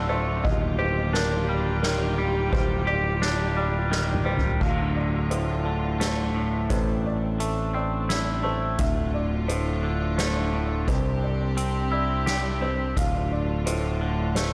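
Melancholic and cinematic, this post-rock excerpt in 3/4 opens with a twangy, compressed electric guitar playing arpeggios up front through digital delay, while a felt-muted upright piano with audible action noise adds its own delayed arpeggios in the background and a clear studio string section holds sustained, lightly vibrato chords. A growly, punchy electric bass anchors the low end, and a soft-mallet drum kit with dark cymbals and a boomy kick enters at 0.4 seconds. A drum fill at 3.9 seconds leads into a new section at 4.6 seconds, all set in a light, small-room ambience.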